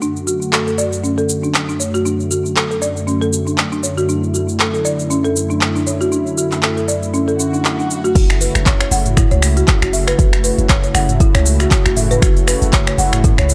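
A woody folk marimba, struck with medium mallets on hardwood bars, plays dry, rustic arpeggios through this warm, hypnotic afro house passage, its notes trailing a tape echo and breathing with sidechain pumping. Beneath it, a smooth, detuned sawtooth pad holds sustained chords with a soft attack and chorus, as a filter sweep works across it through the opening stretch. An up-front afro-pop kit of crisp hats, shaker, finger snaps, handclaps, toms and crash cymbal carries a swung groove with a tape-tinged, small-room character. An electronic swell arrives at 7.4 seconds and leads into a drop at 8.2 seconds, where a deep electronic kick and a boomy, sine-based 808-style bass enter, the mellow bass also pumping as the harmony moves from D/F# to F#m7. Light reverb and digital ambience lend the mix a gentle sense of space.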